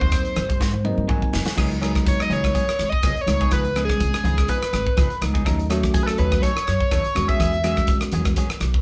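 Bright and soaring, this electric jazz fusion passage at 124 BPM in Db mixolydian sets a gritty, screaming overdriven synth lead over a bell-like tine electric piano, a twangy clean electric guitar adding stabs in the background, a woody pizzicato upright bass, a punchy, polished studio drum kit up front and very quiet, close congas entering at 0.4 seconds, with the drums and electric piano each playing a fill from 0.6 to 1.6 seconds before the chords move through Db7sus4, Db9 and Ebm7b5 to E69 in a moderate room reverb.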